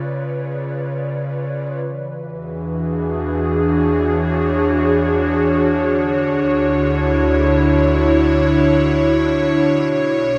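Ambient music in free time with a melancholic, spacious mood, where an airy, breathy pad with a soft, detuned warble and chorus holds sustained chords up front from the start (C#7b9, E13, Dmaj9 and Bmadd9), joined at 2.5 seconds by a deep, rumbling drone that sits low and ominous in the bass with its own reverb and a phaser, all set in a wet concert hall.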